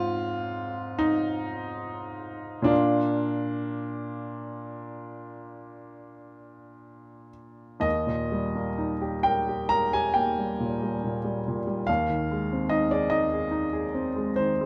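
An upright piano opens alone on an Fm/Ab chord, setting a tender, nostalgic tone for this romantic nocturne in Eb major. The pulse moves slowly in 9/8, between 33 and 49 BPM counted in dotted quarters, and the playing stretches and relaxes with free rubato across a range from Eb2 to Bb5. The instrument has a woody, vintage character with long sustain, and the audible action noise adds an intimate, human touch. Close, detailed microphones place the piano up front, with only light reverb around it. After a turn to Bb, the music settles onto Eb at 7.8 seconds and then moves to Ab/Eb at 11.9 seconds, closing this brief passage cut from a longer piece.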